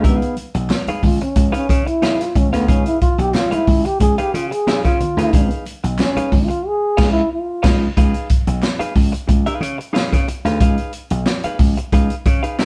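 A gritty, energetic funk cut from a longer piece, with the whole band playing together in one room under a moderate studio reverb. A dark, breathy trombone takes the lead from the start, its whispered, intimate jazz-style solo marked by light vibrato, soft attacks and scooped notes, until the band hits an accent between 6.6 and 8.0 seconds and the horn drops out. Beneath it, a bright, punchy slap bass sits up front alongside a natural-sounding acoustic drum kit with a punchy kick, medium-tuned snare, hi-hat and crash cymbal, while a clean, compressed semi-hollow electric guitar adds a picked, hollow-bodied accompaniment over a Db9 harmony. High-tuned, thin-skinned congas played with soft hands sit close and dry in the background until 6.5 seconds, and a very quiet group handclap joins at 0.7 seconds and carries on through the closing section once the trombone has finished.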